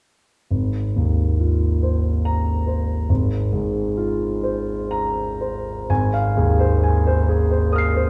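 Impressionist classical solo piano, luminous and serene, drifts with rubato in a slow 6/8 of about 38-48 BPM in Ab major, tuned to A4 = 438 Hz, as a clear concert grand with deep bass and long natural sustain ranges from Ab1 to C7, moving from Ab69 through Bbsus2/Ab to an Ab6 chord where a new section begins at 5.9 seconds, the instrument close in presence yet wrapped in a wet recital-hall reverb heard from further back in the room, in a brief passage cut from a longer piece.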